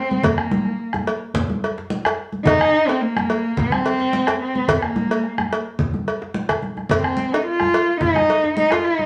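Heard through a wet studio reverb, this festive, powerful fragment of a West African drum ensemble sets a dark, bowed cello played by a single player up front, its soft attack, expressive vibrato and portamento carried over a close, dry, metallic cowbell, bright thin-skinned congas in a live room, a round bombo and a tight, cracking djembe in the background, with a short drum fill at 6.5 seconds.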